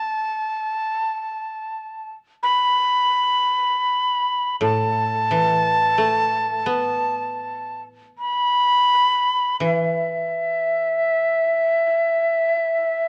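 Japanese traditional chamber music in free time and E miyako bushi, this calm, austere excerpt features a breathy, reedy shakuhachi singing the melody between E5 and B5, with a bright, woody koto played with fingerpicks accompanying from A2 to F4. The pace gradually slows from 5.4 seconds on. A moderate stage reverb surrounds the pair, and a worn cassette-tape sound adds a warbling pitch drift.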